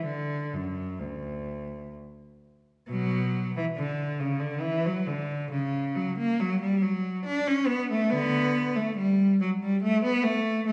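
Classical in style, this baroque-style suite movement for unaccompanied cello moves with a flowing, dance-like mood in 3/4 at roughly 61-72 BPM, taken with a rubato feel. A single bowed cello carries the whole recording from 0.0 to 10.7 seconds, ranging from D2 up to D4. Its tone is rich and focused, with vibrato and a smooth top, and it sits up front in the sound. The player is heard in a church or concert hall, where a wet recital hall reverb with a decay of about 1.4 seconds surrounds each phrase. The short clip, cut from a longer piece, restates its opening material at 2.9 seconds, keeping the same flowing, dance-like character throughout.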